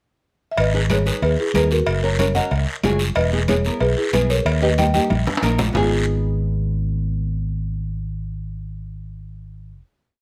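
The buzzing marimba leads this fiery, passionate cumbia in G# minor at 186 BPM, its woody, airy hook phrases partly doubled in thirds over a round, up-front fingered electric bass and a fingerpicked nylon-string guitar with old strings playing rhythmic triad chords through G#m, F#, E and D#. Ringing cowbell and timbales and a raspy guiro drive the groove from 0.6 s, joined at 0.9 s by soft-handed congas in the background, until a drum fill hands off to a final G#m chord at 5.8 s. The close, detailed sound carries little reverb.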